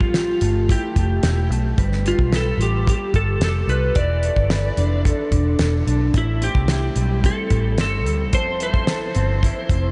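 A straight 4/4 pulse at 110 BPM from a dry, up-front 70s drum kit with a fat snare, tight kick and hi-hat, together with a dark, round, foam-muted picked bass, anchors this lonely, mellow indie and bedroom pop fragment in A minor, where a slightly broken-up, lo-fi electric guitar through a small old amp, bathed in lush chorus and vibrato, picks through Fmaj9, G9, E7sus4 and Am7 beneath a clean, warm slide lap steel melody colored by analog chorus and tape echo, all of it soaked in a huge ambient reverb for a dreamy, softly dulled sound.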